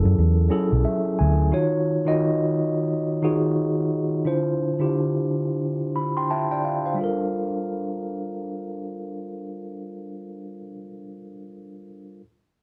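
A moderate studio reverb frames this introspective, sultry R&B excerpt at 88 BPM, with a lazy swing on the sixteenths. A mellow, clean tine electric piano sits up front through its built-in speakers, voicing lush ninth chords from F#m9 down through Ebm9 and Dm9 and adding short fills along the way. A dark, round, foam-muted fingered bass appears only briefly at the start and stops at 1.5 s, leaving the keys alone as the harmony settles onto Gm9 at 7.0 s.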